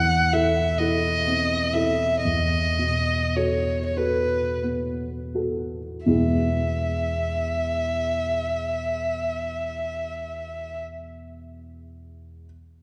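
Lyrical and warm, this romantic classical duo drifts in a rubato 6/8 at a very slow 26 to 46 BPM in E major, slowing over its first 6.1 seconds before settling on an E major chord, as an expressive, warm-toned solo violin sings its melody up front with vibrato, soft attacks and portamento, stopping at 10.8 seconds while a dark, mellow concert grand piano with a deep, natural bass carries the accompaniment through to 12.5 seconds, all framed by a wet concert hall reverb in this excerpt from a longer piece.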